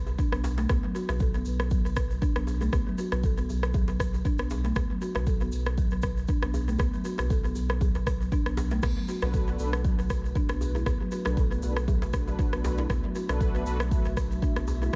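A woody, soft-mallet folk marimba carries rustic arpeggios with 12-bit sampler grit, tape echo and sidechain pumping, over a round sine sub bass and a deep electronic kick in this earthy, spiritual afro house excerpt with a gentle swing. A tight, cracking djembe sits in the background beside a grainy, distant egg shaker and a produced afro-pop kit with crash cymbal and rim click, all three touched by tape echo inside a small, echo-heavy room. Detuned, brassy synth stabs with chorus, vibrato and cassette tape color arrive at 9.2 seconds, and a moody, wave-folded analog pad swells in slowly behind them at 9.7 seconds over a single Bm7 chord.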